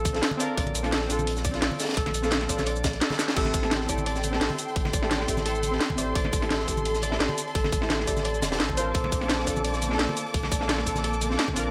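This liquid drum and bass excerpt runs at 172 BPM in a straight 4/4, built on an up-front layered drum kit with a cracking snare, metallic hats, crash and shaker, joined by a tight electronic kick and a gritty, saturated breakbeat kit with a high-tuned snare sitting in the background behind a high-pass filter. Warm acoustic congas add a further layer of percussion low in the mix. In A phrygian and tuned to A4 = 435 Hz, the mood is soulful and melancholic, with a round sine sub bass holding down the low end while a deep, mellow chord stab with analog chorus and dub echo moves between Bbmaj7 and Am7. A ringing, fingerpicked Celtic harp plays arpeggios through the same dub echo from the opening. At 3.4 seconds, after a drum fill at 3.1 seconds, a lush, woody string section enters with bowed sul tasto chords, vibrato and sidechain pumping. A light, small-room reverb gives the whole a close, intimate space.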